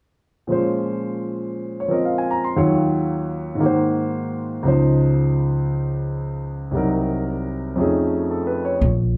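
Big band swing jazz in Bb minor at 115 BPM with a sultry, swinging feel, this excerpt from a longer piece features an up-front concert grand piano with warm, deep lows, comping from 0.5 s through a Bbm9, Ebm9, Ab9, Dbmaj7, Cm7b5 and F7alt progression, before a woody pizzicato upright bass sounds a low Bb1 at 8.8 s, all set in a wet club reverb that places the listener further back in the room.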